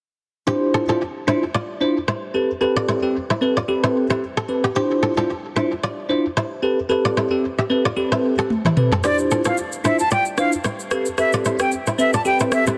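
Lightly swung sixteenths in 4/4 give this mellow, smooth afrobeats passage, cut from a longer piece, its relaxed sway. A bell-like tine electric piano with phaser and a ringing, fingerpicked kora with digital delay share the foreground over a gentle alternation of Dm9 and Am9. An electronic drum kit with rim click, shaker and toms enters at 8.5 seconds with a fill, and at 9.0 seconds a close-miked, airy, reedy concert flute with vibrato and delay takes the melody, all set in light reverb under a dense, heavily limited modern master.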